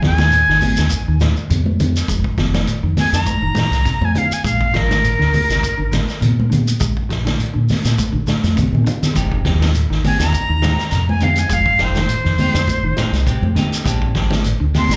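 A defiant, intense afrobeat groove, cut from a longer piece, opens with a breathy, bright jazz flute soloing up front, its reedy, tongued lines carrying vibrato and a slapback echo. Beneath it a dark, clean electric guitar plays fingered arpeggios in the background with a warbly pitch drift, while a round, punchy fingered bass anchors the low end. A vintage acoustic kit with a punchy kick, medium-tuned snare and rolled-off top sits alongside ringing congas struck with hard hands and a grainy, close shekere, all under a lightly swung sixteenth-note feel. The flute pauses partway through, a drum fill arrives at 8.3 seconds, and a picked semi-hollow guitar adds hollow-body stabs with its own slapback echo from 9.2 seconds before the flute returns at 10.1 seconds. The harmony moves between Fm7 and Bb9, then Fm9 and Bb13, and the whole performance comes across as a live gig heard through a club PA with light reverb.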